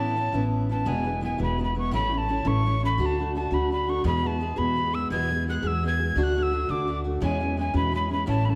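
A whistle, fingerpicked steel-string acoustic guitar and upright bass all sound together from the opening moment of this cheerful, rollicking Celtic jig, a short cut from a longer piece that moves at 114 beats per minute in a straight 6/8. The metal whistle carries the melody in its middle range, its breathy, mellow straight tone touched with a soft chiff at each attack, rolled-off highs and a slightly unsteady quality. Beneath it, the guitar supplies accompaniment with the warm tone of fresh strings, while the pizzicato bass on gut strings adds a woody, thumpy foundation. All three parts sit up front, bathed in the long, wet bloom of a recital hall that lingers for about 1.7 seconds. The harmony opens on Aadd9, moves through E, A, D, E and D again, and comes to rest on E6 at 7.2 seconds, just before the recording ends at 8.6 seconds.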